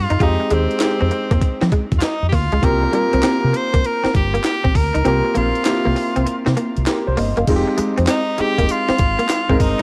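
Lightly reverberant cassette-tape home recording of punchy, confident new jack swing, cut from a longer piece, where an edgy, forceful tenor saxophone leads up front with vibrato and scooped notes over a warm grand piano, a dark, round fingered electric bass, a bright, twangy clean guitar riff with ensemble chorus, a gritty, pitched-up breakbeat kit with a thumpy kick and high-tuned snare (the kick muted from 5.1 to 7.5 seconds), and very quiet, crisp group handclaps.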